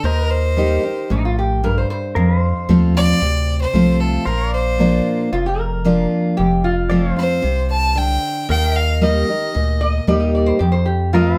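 A moderate studio reverb surrounds this brooding, heartbroken honky-tonk and classic country fragment at 114 BPM in a straight 4/4. Up front, a full-bodied picked dreadnought acoustic guitar and a deep, round analog bass carry the Eb, F and Bb changes, while a clear, biting fiddle with light vibrato and an airy bow sings the intense, close melody until 10.0 s. A nasal, metallic lap resonator guitar played with slide adds a second line from 1.1 s, and in the background a clean, twangy pedal steel guitar lays down compressed, sustained chords with volume swells.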